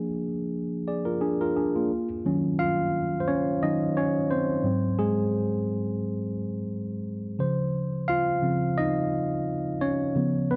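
Soul in Eb minor at 87 BPM with lightly swung sixteenths, this smooth, cinematic fragment from a longer piece features a lone tine electric piano, worn, slightly out of tune and clean through a combo amp, placed up front in a moderate plate reverb, taking a solo from 1.9 seconds as the harmony moves from Bb7 through Ebm9 and Ab7 to Dbmaj7.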